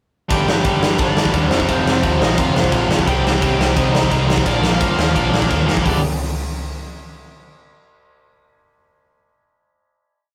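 A big rock drum kit sits up front with a tight kick and medium-tuned snare in a bright stone room, driving a two-step groove at 173 BPM in this urgent, aggressive punk rock piece in G minor. Two distorted electric guitars pound out eighth-note power chords, one very quiet and one overdriven, while a growly, punchy overdriven bass drives eighth notes beneath them and a crunchy overdriven guitar in the background plays hook phrases partly doubled in octaves. The short piece moves through G5, F5, Cm and Bb before landing on a final G5 chord at 5.8 seconds, all captured as a rough rehearsal-room recording with warm saturation and moderate reverb.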